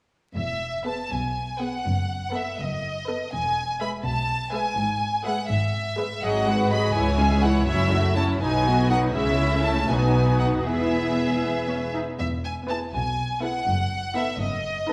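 At 0.4 s a focused violin section carries the melody high and up front, while a close, lush cello section and a rich double bass section lay down the bass beneath it. This is a quick, lively and graceful classical-period movement for string orchestra in 6/8, moving at 82 BPM in dotted quarters with a flexible, rubato feel, in E major and tuned to A4 = 444 Hz. A second violin section joins at 0.8 s with a smooth, even counterline, and the violas follow at 0.9 s with a bowed accompaniment. The harmony travels from E through G#m7, C#m and F#m7 to B before settling back on E, and the opening material returns at 12.2 s. Each section sings with vibrato inside a wet hall reverb touched by vinyl crackle, and the passage is cut from a longer work.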